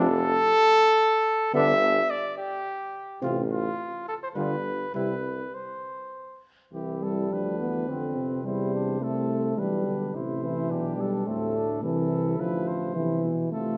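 A punchy cornet carries the melody up front in this stately classical brass quintet, its smooth top and polished line sitting clearly above the ensemble. Close behind, a dusky French horn with light vibrato shares the foreground as accompaniment, while a shadowed trumpet traces a soft second line further back. A trombone of sombre colour fills the middle of the chordal support, and a vintage-toned bass trombone anchors the low end from the background, both touched with gentle vibrato. Moving in an unhurried three-beat metre with a flexible, rubato feel, the harmony pauses briefly at 4.9 seconds before opening onto a new section at 6.7 seconds. A generous recital hall reverb wraps the whole quintet in a resonant, glowing space through this excerpt from a longer piece.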